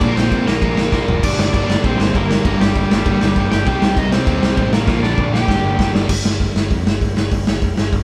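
A garage drum kit with a punchy kick and a rolled-off top sits up front and drives this angry, urgent punk rock excerpt, rolling through fills at 0.9 and 4.9 seconds while a crunchy overdriven guitar carries the melody over two sludgy, dark distorted rhythm guitars riffing in the background; the lead guitar drops out at 5.9 seconds and the rhythm guitars at 6.1 seconds, leaving the growling, bright overdriven bass and the drums to push on through the live-room sound.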